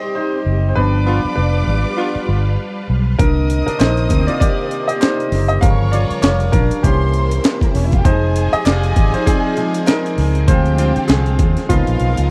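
A dry, close 1970s-style studio sound in a small room frames this lush, cinematic soul passage, cut from a longer piece and carried by a silky, swung sixteenth-note lilt. A clear, natural baby grand piano sits up front and takes the solo from start to finish over chords that drift from a rootless Abmaj7 through Cm9 and C7b9 to a closing Db13. Warm strings, bowed sul tasto with vibrato and a soft attack, play a second line alongside it, while a swirling, bright string machine holds sustained chords in the background through ensemble chorus and phaser. A dark, round, foam-muted electric bass enters at 0.5 seconds, punchy and up front. A smooth-topped horn section with light vibrato punches stabs into the band accents from 1.1 seconds and again from 10.8 seconds. A gritty, compressed sampler-style drum kit, pitched up and overdriven with a thumpy kick and medium-tuned snare, arrives at 3.2 seconds, and a very quiet, distant group handclap adds crisp human texture.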